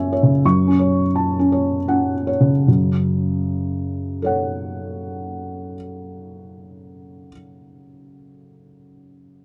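Melancholic and wistful, this short neoclassical minimalist piano piece, cut from a longer work, moves in a rubato triple metre. A felt-muted upright piano plays alone for the full 9.4 seconds, reaching from deep in the bass up into its high register. Its tone is soft, dark and mellow, with the thick felt giving it an intimate, natural quality that sits up front. The opening passage slows down over its first 2.7 seconds, with an F# minor chord sounding early on, before a second section runs on to 7.3 seconds. A close, dry 1970s-style studio sound is touched only by light reverb and the ambience of a small room.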